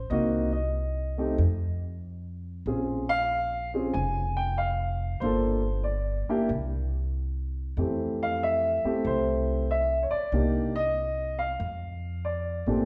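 Heard in a reverberant recital hall with a long, wet tail, this jazz excerpt has the spacious glow of a church or concert hall. A dark grand piano carries the melody up front, its mellow tone ranging from the low register into the upper treble. An upright bass, plucked pizzicato on steel strings, sits close as well, woody and thumpy in the lowest register. Both parts play together for the full 12.9 seconds in a swing feel with a warm, swinging mood. The harmony moves through half-diminished and minor-seventh colors, with brief chordless passages before settling on Fmaj7 and closing on F.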